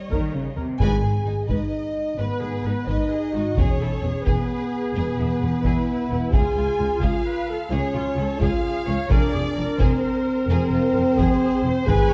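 Heroic and relentless, this cut from an epic orchestral film score moves at 87 BPM in a straight 12/8, with a mellow French horn section up front holding sustained chords over a close, dry taiko ensemble struck with heavy sticks and a warm bass line from cellos and woody double basses. A lush symphonic violin section carries the melody in the background while a chamber violin section adds a focused, smooth-topped second line and distant violas supply even accompaniment, all bowed with vibrato through chords moving from G#m to E, C# and Fm. A very quiet timpani hit marks a band accent at 0.8 seconds, and the dark production sits in a moderate scoring-stage reverb.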